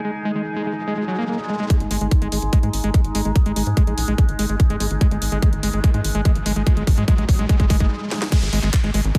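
Psychedelic trance with an alien, hypnotic mood, where a squelchy, distorted acid bass riff, a resonant drone with moving overtones and a warbling, lo-fi pad open over a background riser before an up-front tight kick and a garage kit with cracking snare, handclaps, hi-hat and crash enter at 1.7 seconds, joined by a punchy sawtooth sequencer bass at 1.8 seconds, for a build-up with a drum fill and a brief stop near 7.9 seconds.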